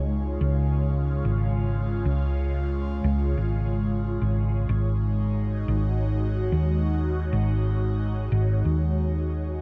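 A round, hollow-toned fingered electric bass sits up front through the whole 9.6 seconds of this hazy, peaceful ambient dub passage, moving at 91 BPM in 4/4 with a gentle swing on the sixteenths. Alongside it, equally up front, a soft, breathy pad holds sustained chords, its detuned sawtooth-and-triangle tone and noise layer colored by chorus, phaser and a vintage sampler grit, shifting from Db to Ab7sus4 at 4.7 seconds. Light reverb and a dark production give this fragment of a longer piece a dusky, enveloping feel.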